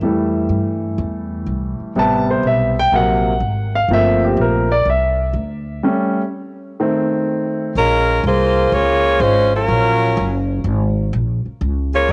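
Recorded at home on cassette, this short cut from a longer big band swing piece has a light reverb and the intimate air of a small room. At 124 BPM in a sultry, swinging 4/4, it opens with a grand piano solo that sounds natural and warm, with deep bass and a tape-tinged character, over a woody, thumpy pizzicato upright bass with steel strings. The piano's chords move from Fmaj9 through Am9, G#13 and Gm11 before a stop arrives at 5.8 seconds. At 7.8 seconds the piano drops out and the music settles into Bb minor as a tight, close-miked saxophone section takes the melody, sounding warm with light vibrato and colored by cassette tape. The saxophones ride up front over the bass through Bbm7, Gbmaj7, Absus2 and Db6, giving the second section a sultry jazz feel.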